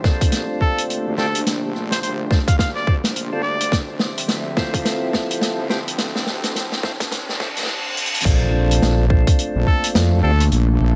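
A heavy, saturated wobble bass anchors this funky, playful glitch hop excerpt at 106 BPM with a swung 16th-note feel, set against a tight, layered electronic kick and an up-front vintage drum kit of dark cymbals, hi-hat, rim click and medium-tuned snare, while a round tonewheel organ plays stabs through a slow rotary speaker, 12-bit grit and digital delay. A nostalgic, warbly tape-like pad holds Bbmaj7 and Dm9 chords in the background alongside a faint, blurred granular cloud pad, and a punchy trumpet states a short melody from 0.6 to 3.8 seconds before returning at the end. After a build-up with a filter sweep and drum fills, a quiet reverse cymbal leads into the drop at 8.3 seconds, marked by an electronic impact, all in a light small-room ambience.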